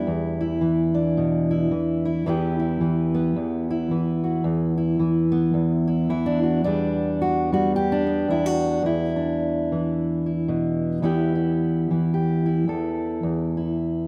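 A rough home-demo recording bathed in a moderate plate reverb carries this intimate, reflective folk excerpt in E minor, where a solo fingerpicked steel-string dreadnought guitar, full-bodied and up front with audible finger squeak, plays at 109 BPM in a swung 4/4 across a range from E2 to A4, moving from E5 and Em chords into a second passage at 6.6 seconds that returns to E5 and closes on Emadd11.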